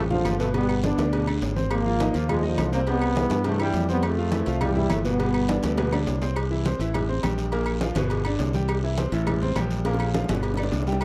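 A brilliant, tight trombone section carries the melody up front over a bright fingered electric bass and a deep-bottomed concert grand piano in this joyful, danceable salsa clip in C major at 206 BPM, with congas, claves, cowbell and bongos, guiro and timbales with agogo bells soon filling in behind. The horns drop out at 6.0 seconds, leaving piano, bass and the percussion (raspy guiro, woody claves, ringing metal-shelled timbales) to drive a second section, with drum fills arriving at 5.5 and 9.9 seconds. The sound is a dry, close 1970s-style studio recording.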